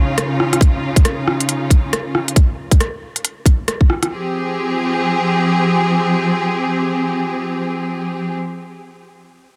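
A bright, biting symphonic string section leads this ghostly, nocturnal future garage piece at 137 BPM in F minor, its lush vibrato chords pumping against the sidechain as they shift from Dbadd9 to Fmadd9 and hold until 8.4 seconds. A very quiet, flickering granular texture adds a grainy, mellow shimmer only at the very start. An up-front electronic kit with crisp hi-hats, rim clicks and softly clipped snare swings over a tight, overdriven kick, the kick falling away at 3.9 seconds and the kit at 4.1 seconds in this dense, heavily limited passage cut from a longer piece.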